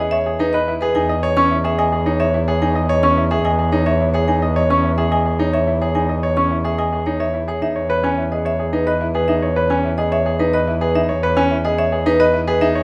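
Heard in a moderate recital hall with a 1.7-second reverb and a faint mains hum beneath it, this cut from a longer piece is classical minimalist pattern music in E major. It moves at 108 BPM in a straight 3/4 and has a hypnotic, propulsive feel. A marimba played with medium mallets carries the melody, spanning B4 to C#6 with a dark, smooth tone. Beneath it, a clear baby grand piano sits up front with arpeggios between C#4 and D#5, while a single bowed double bass sounds a rich, even E2 with vibrato, placed close and forward. The harmony opens on Emaj7, moves to C#m/E at 1.0 seconds and returns to Emaj7 at 7.6 seconds, and all three parts play for the full 12.8 seconds.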